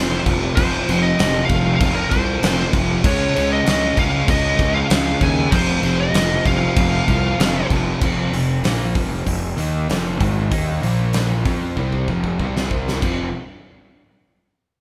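A menacing, heavy hard rock excerpt in F minor, moving at 96 BPM in a straight 4/4, cut from a longer piece and played by a band live in one large studio room with moderate reverb. A picked, high-gain lead guitar carries the melody from the start, its distorted tone singing between Bb4 and Ab5 until it stops at 7.7 seconds. Beneath it, a double-tracked, crunchy overdriven guitar drives the riff across the whole passage, while a growly fingered electric bass adds bright fuzz and overdrive in the low register. The acoustic drum kit sits up front from 0.3 seconds, with a punchy kick, a fat snare, hi-hat and crash cymbal ringing in a bright stone-room ambience. The harmony moves from power chords on F, Db and back to F into an F minor chord at 8.0 seconds, then shifts through Bb, F and C as a drum fill from 11.8 to 13.0 seconds pushes toward a final F.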